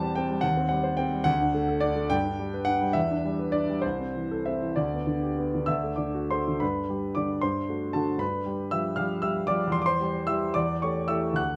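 A romantic classical character piece for solo grand piano, this short passage is lyrical and passionate, moving in 6/8 with a free, rubato feel. The piano carries everything on its own from 0.0 to 11.6 seconds, spanning from C2 up to F#6, and its tone is warm, polished and up front. The opening phrase begins on a darkened C minor colour before settling through D, G, Em7 and Am/C toward a D chord. A new passage starts at 6.6 seconds, where the harmony turns through G, D7/G and G7 before reaching C/E and A7/E. Close, detailed microphones keep the instrument present, while a moderate recital hall reverb lends air around it, and the fragment is cut from a longer piece.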